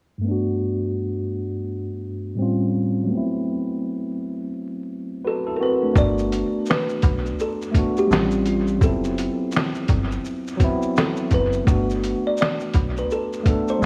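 Lo-fi hip hop at 84 BPM in G major with a swung 16th feel, mellow and cosy, cut from a longer piece and coloured by vinyl crackle, light reverb and an echo-heavy small-room ambience. A clean, up-front tine electric piano opens alone, playing jazzy chords such as Gmaj9 and A7alt through a filter sweep and cassette-tape character. At 5.3 s a woody, airy kalimba melody with a thumbnail pluck and dub echo joins, and at 6.0 s a gritty, pitched-down, sampler-style trip hop kit arrives up front, with a thumpy kick, medium-tuned snare, hi-hat, shaker and finger snaps in dub echo, alongside a metallic, fast-attack FM bass.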